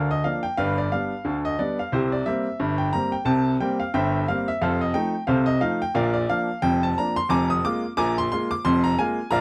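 Ragtime piano in a cheerful, playful mood, with a clear, intimate baby grand playing solo in a swung 2/4 across the full 9.4 seconds of this cut from a longer piece, its long sustain and audible action noise sitting up front in light reverb as the harmony moves from Bb/D through G, C7 and F7 to Bb and then Bb7/F.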